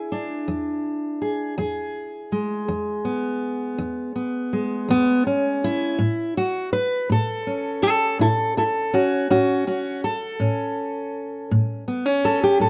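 A dry, close recording with a 1970s studio character, light reverb and a small-room ambience frames a single fingerpicked steel-string acoustic guitar sitting up front, its fresh strings giving a warm tone and a finger squeak audible. This soulful, laid-back piece of acoustic country blues moves in a slow 12/8 at 54 BPM in E mixolydian, tuned to A4 = 443 Hz. The guitar spans E2 to B4 throughout the 12.7-second excerpt, resting on E7 before moving to A at 6.0 seconds.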